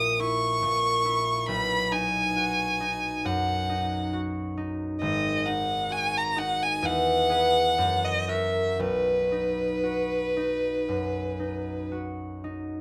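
Serene and tender, this romantic classical duo unfolds in a flexible rubato, with a single rich, smooth violin carrying the melody up front, its bowed line close and even with vibrato. Beneath it, a concert harp plays fingerpicked accompaniment with a ringing, acoustic tone, moving through harmonies that settle back on B major and sounding on alone after the violin finishes at 11.9 seconds. A moderate studio reverb gives the pair a sense of space in this passage cut from a longer piece.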